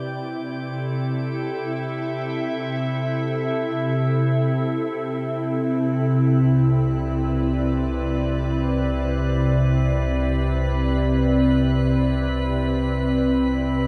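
Drenched in a huge, wet reverb with a cassette-tape haze, this serene, peaceful ambient passage floats in free time, cut from a longer piece. A glassy, ethereal FM pad sits up front with ensemble chorus, holding sustained chords that move from Cadd9 to Cmaj9 at 5.1 seconds, while a drifting texture of bright glass harmonics with shimmer reverb fades out and then fades back in beneath it. At 6.5 seconds a deep, ominous rumbling drone with a phaser enters underneath, darkening the calm.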